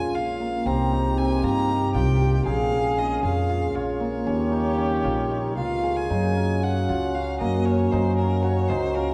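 Set in a straight, lopsided 7/8, this playful and hopeful contemporary chamber piece is cut from a longer work and heard in a resonant concert hall with a dark, warm production. A clear, smoothly bowed solo violin carries the melody with vibrato over a distant, soft-edged solo French horn second line and a mellow horn section holding tight background chords. Shimmering, ringing cimbalom arpeggios sound alongside a woody, growly pizzicato upright bass that sits up front, moving through minor-seventh and dominant harmonies before settling on a Gb chord at 6.1 seconds.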